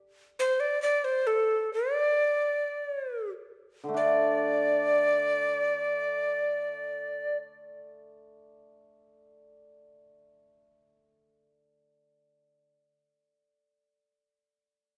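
A breathy alto recorder carries the melody from 0.4 s, its woody tone marked by a crisp, chiffy attack, a slightly unsteady vibrato and a close, up-front presence. This short passage, cut from a longer Chinese traditional chamber piece, feels graceful and tender, moving in a free, rubato two-beat pulse that slows through the opening seconds. A hammered dulcimer enters at 3.8 s with a shimmering, ringing accompaniment in its lower register, sitting somewhat behind the recorder in level. The recorder falls silent at 7.4 s, leaving the dulcimer to sound alone until 12.7 s. A lush recital hall reverb surrounds both instruments, lending the performance an intimate yet resonant sense of space.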